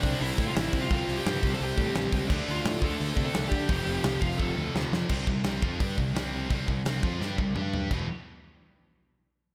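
Up-front acoustic drums with a tight kick and medium-tuned snare drive this heavy, epic heavy metal fragment, rolling into fills at 4.4 and 7.2 seconds beneath a growly, punchy fuzz bass, a pair of bright, scooped high-gain rhythm guitars set in the background (one carrying slapback echo), a very quiet double-tracked overdriven guitar riff that drops out at 5.1 seconds, and a distorted high-gain lead melody that ends at 4.7 seconds, all bathed in a lush hall reverb that gives a big arena sound.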